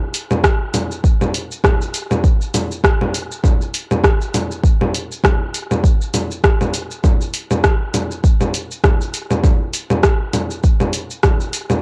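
A tape-warm home cassette recording with light reverb and a small-room feel opens this hypnotic downtempo excerpt, cut from a longer piece and moving at 100 BPM in 4/4 with a 56% swing on the sixteenths. A layered electronic deep house drum kit of congas, hi-hat, rim click and shaker sits up front from 0.1 to 11.8 seconds. A deep electronic kick joins from 0.4 to 11.4 seconds, slightly louder and also up front.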